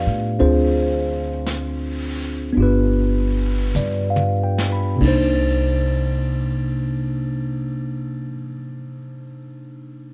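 Intimate and smoky, this short jazz ballad fragment moves with a lazy swing and gradually slows through its opening half. A clean tine electric piano, heard up front through a combo amp with a phaser coloring its tone, carries the chords from Dm7b5 to G7 before arriving on Cm9 at 5.0 seconds. Underneath, a woody pizzicato upright bass with steel strings holds the low end until 8.2 seconds, leaving the piano to ring out to the close. A vintage brush drum kit sits low in the mix, its rolled-off top, medium-tuned snare and punchy kick giving a small-room feel, and it plays a fill shortly before dropping out at 5.4 seconds. The dark, dry production lends the piece a warm, close atmosphere.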